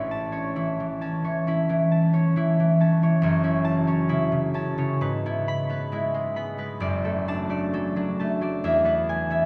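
A bright, ringing concert harp, fingerpicked and up front across a span from F#1 to B5, plays alone through this peaceful, dreamy classical fragment cut from a longer piece, moving with a rubato feel around 67 BPM in 4/4 through chords of A, F#m7, E/G#, D/F# and E while a cathedral reverb with a 6.8-second tail bathes the sound.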